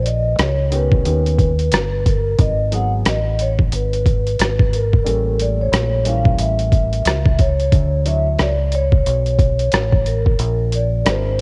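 Cut from a longer piece, this home recording on cassette sits in a small room ambience, giving the whole take a smoky, mellow haze. It is jazz-hop at 90 BPM in 4/4, with the 16ths swung and the tuning set slightly low at A4 = 435 Hz. A boom bap sampler-style drum kit sits up front with hi-hat, rim click and a thumpy kick, its pitched-down, compressed sound made gritty by overdrive and cassette saturation. Beside it, a deep dub fingered electric bass plays round and dark, direct and amped, low in its register. A vibraphone with soft mallets carries the melody, metallic and ringing with a medium motor vibrato, its tone treated with cassette tape and tape echo. From 0.7 s a quiet upright piano adds woody, intimate accompaniment with audible action noise and a vintage character, while the harmony moves through jazzy chords such as G#m7, A7b9 and Dmaj9.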